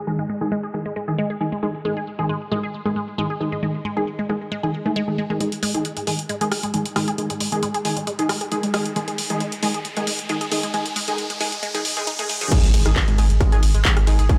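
A straight 4/4 pulse at 135 BPM drives this industrial, hypnotic peak-time techno excerpt, which opens with a squelchy, resonant blip pluck riff, phased, delayed and swept by a filter, alongside aggressive, thick detuned rave stabs thrown into chorus and tape echo, both pumping. At 5.4 seconds a techno drum kit of handclaps, rim clicks, warm hats, ride and crash arrives in a large room as the build-up starts, the stabs now filter-swept, with a background riser pushing toward the drop. At 12.5 seconds a distorted, up-front electronic kick slams in with an impact, joined moments later by a deep, round, overdriven sub bass.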